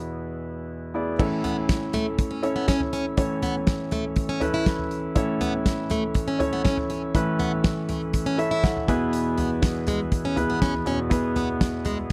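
A straight 4/4 pulse at 121 BPM drives this warm, uplifting piano-led pop piece in A major, cut from a longer recording. A concert grand piano opens alone on an E chord, intimate and polished with audible action noise, deep bass and long sustain, and it carries the accompaniment from E2 up to G#5. At 1.2 seconds the harmony moves to A as a loose indie drum kit enters up front, its tight kick, medium-tuned snare, hi-hat, toms and crash sounding like a small room with a rolled-off top. At the same moment a very quiet pipe organ on stopped flute stops begins holding soft, hollow chords in a baroque voicing underneath. A picked, plugged-in steel-string acoustic guitar follows at 1.4 seconds with a dark riff between G#3 and E4, finger squeaks audible. The piano plays a fill from 8.1 to 9.1 seconds as the chords return to E, all within a dry, close 1970s-style studio sound touched by light reverb.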